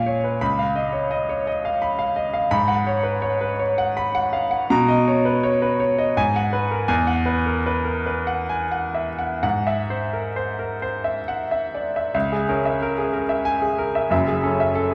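A freely flowing 3/4 with generous rubato carries this mysterious, hazy impressionist solo piano passage, cut from a longer piece. A clear, intimate baby grand sits up front, its natural tone and audible action noise spanning the low bass to the upper treble as lush extended harmonies drift past, including a shadowy augmented chord at 9.4 s. A wet reverb from a church or concert hall surrounds the instrument, and a new section begins at 12.1 s, moving through minor sixth and minor ninth chords.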